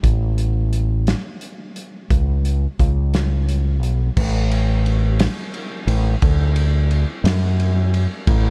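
A dry, close-sounding cut from a longer indie rock piece, upbeat and carefree at 58 BPM in a straight 6/8, pairs a growling, overdriven fingered electric bass up front with a loose acoustic drum kit in a small room, whose punchy kick, medium-tuned snare, hi-hat and dark ride and crash cymbals sit mid-forward with a rolled-off top, moving into a second section at 4.2 s.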